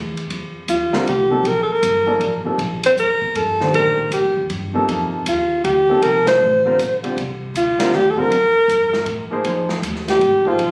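A swung triple-metre feel carries this modal jazz passage, cut from a longer piece, with a spiritual, searching mood. Upright bass opens the music, its pizzicato steel strings sounding woody and thumpy. An open jazz drum kit joins on hi-hat, kick, ride and snare, with dark cymbals, a boomy kick and a smooth, rolled-off top in a small room. A mellow alto saxophone sits up front with vibrato and scooped notes, while a polished baby grand piano, present and short in sustain, accompanies it and the band hits an accent together at 6.2 seconds. The harmony shifts from F9sus4 to Bb9sus4 as the saxophone takes a solo at 9.4 seconds, all captured on a phone in the room with a light club reverb.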